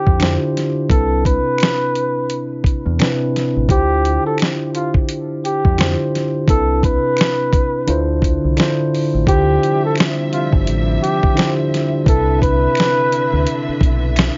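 A bucket-muted trumpet, veiled and vibrato-laden with scooped notes, carries the melody over a mellow tine electric piano from the start of this reflective, melancholic lo-fi hip hop excerpt, both softened by a low-pass filter. A gritty, compressed sampler-style kit with a thumpy kick and fat snare swings alongside a deep, round fingered electric bass, while very quiet finger snaps sit in a small room. At 9.3 seconds a dark, woody string section enters with lush bowed chords, adding weight to the Dm11 and Cmaj9 harmony under light reverb.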